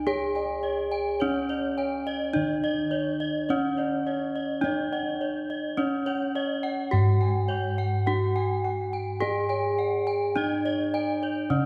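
Heard from further back in a concert hall, the recording is bathed in a long, wet reverb that lets each bronze stroke hang in the air. This is a slow Javanese gamelan passage at 52 BPM in 4/4 with a straight feel, ceremonial and shimmering in mood; cut from a longer piece, the excerpt runs about 11.7 seconds as a single section. A bronze metallophone carries the melody, its horn-mallet strikes bright and ringing up front, while a second metallophone plays arpeggios an octave higher, its paired tuning producing shimmering beats. Beneath them, bossed gongs struck with padded beaters hold the bass with a round, mellow, soft tone. Another set of bossed gongs joins at 0.1 seconds with arpeggios in the upper register, their metallic beating adding a keen edge to the glow of the ensemble.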